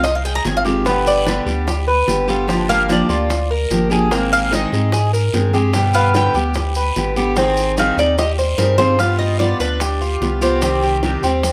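Sultry and warm, this short cut from a longer Cuban son and guajira piece moves in a straight 4/4 feel. A mellow, metallic Cuban tres carries the melody with its picked double strings, playing a solo over the first 9.0 seconds, while a second tres picked in arpeggios adds a warmer layer with some octave-doubled strings. Up front, a bright, full-bodied fingerpicked steel-string acoustic guitar with fresh strings supplies the accompaniment, anchored by a deep, clean sine sub bass that sits dark and sustained in the foreground. In the background, round, low-tuned bongos, a raspy, dry guiro and grainy, distant maracas fill out the percussion, with a drum fill at 8.6 seconds leading into a new section at 9.0 seconds. The harmony drifts through chords such as Fm7, Gm7 and Abmaj7 before settling on G7 and Cm, all bathed in light reverb.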